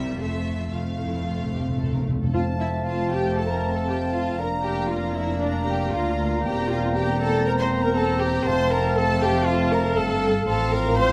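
Rich, smooth violas sit up front in this quick, graceful and lively classical-period orchestral passage in F major at 117 BPM with a rubato feel, over bowed cellos and double basses, while a clear violin melody and a second violin line hover in the background, hard-mallet timpani open with a fill and return at 8.5 s, and from 2.3 s a pure flute, oboe, mellow clarinet and dark bassoon enter together with a horn section holding sustained chords, all in light reverb.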